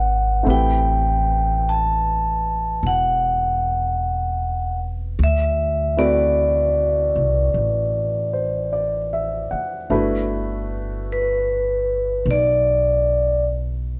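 A late-night, romantic jazz ballad in G major at a slow 51 BPM opens with a dark, ringing vibraphone melody, played with medium hard mallets and its motor off and set up front, over a natural-sounding baby grand piano with short sustain and a woody, plucked upright bass. The swung harmony moves from Am9 through D13 to a closing Gmaj13 beneath light reverb. The vibraphone falls silent at 13.4 seconds while piano and bass carry on in this passage cut from a longer piece.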